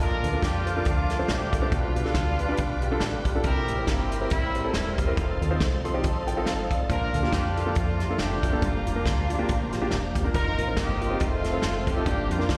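Soulful and jubilant, this uptempo gospel excerpt swings at 139 BPM in Bb major, with a clear, vibrato-rich horn section carrying the melody over an intimate grand piano whose action noise is audible and which breaks into a fill at 5.6 seconds, both touched with slapback echo. A lightly overdriven tonewheel organ sits in the background through a slow rotary speaker and chorus vibrato, while a very quiet, lush bowed string section holds high sustained chords. Underneath, a dark, round, foam-muted fingered bass and a tight, up-front soul drum kit with a rolled-off top drive the groove, all heard as a live gig through the venue's PA with recital hall reverb.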